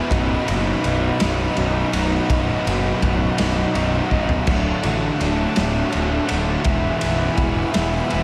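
A small-room ambience frames this restless, cathartic excerpt of quiet-loud alternative rock in a slow 6/8 at 55 BPM, where a lo-fi overdriven garage guitar riffs up front over a sludgy, dark distorted guitar, a growly fuzz bass and a punchy, saturated drum kit that drops in a fill at 4.1 seconds, while a floating, sul tasto string section holds soft-attack chords in the background through B, D and E.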